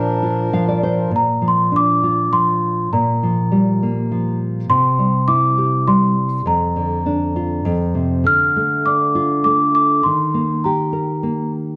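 A dark, warm recording sits in a moderate recital hall reverb with a faint mains hum beneath it, in this short cut from a longer children's lullaby. The mood is tender and gentle, moving at 101 BPM in a straight 3/4 in Bb major, tuned to A4 = 437 Hz. A large celesta carries the melody high in its range, its bell-like, sweet tone struck with soft felt hammers and ringing up front until 11.5 seconds. A thumb-plucked classical nylon-string guitar, warm and up front, accompanies throughout and adds a brief fill from 0.2 seconds. A reedy, breathing hand-pumped harmonium holds smooth sustained chords only in the opening 1.1 seconds, sitting further back. Across the excerpt the harmony moves from Bb through Gm7/Bb, C, Bb/F, F5 and Dm, and on to Eb.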